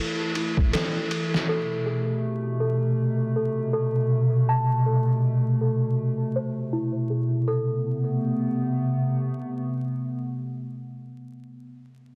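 A warbling, lo-fi pad sits up front, holding dark, nostalgic sustained chords with chorus and slow attacks from Esus4 to Amadd9 in this cinematic, hypnotic trip hop fragment cut from a longer piece. A delicate, bell-like celesta spins soft, mellow arpeggios through a low-pass filter sweep and digital delay. A muffled, overdriven sampler-style kit with a thumpy kick, snare and ride appears only briefly from 0.4 to 1.5 s, all set in a lush hall reverb over vinyl crackle and a dense, heavily limited master.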